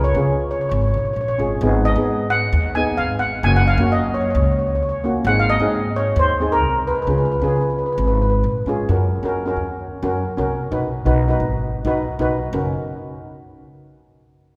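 A straight 4/4 calypso pulse at 132 BPM drives this bouncy, festive passage in F# major, cut from a longer piece and bathed in a lush concert-hall reverb. Up front, a double-seconds steel pan played with medium rubber sticks carries the airy, shimmering melody until 8.4 s, while a second double-seconds pan adds boxy, metallic accompaniment chords moving from C#7 through G#m7 to F#, and a pizzicato upright bass with steel strings gives a woody, dark low end. After the melody stops, the accompaniment pan and bass carry the music through B6 and back to F# before ending near 12.8 s.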